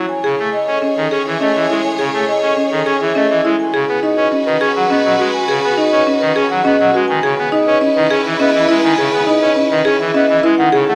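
Bright and hypnotic, this short cut from a longer piece of minimalist classical pattern music moves at 103 BPM in a straight 3/4, centred on A lydian. A vibraphone played with soft mallets carries the melody, its ringing, airy tone shaded by a medium motor vibrato. Beneath it, a buzzing marimba struck with hard mallets spins woody, percussive arpeggios from 0.2 seconds, sounding dry and boxy. A pipe organ on its trumpet stop gives a brassy accompaniment in a baroque voicing, with an audible chiff and an up-front presence. A clear, focused violin section holds bowed chords with vibrato, while a large studio reverb adds a lush wash as the harmony moves from Amaj7 to G#m7 at 3.6 seconds and then to C#m7 at 7.1 seconds.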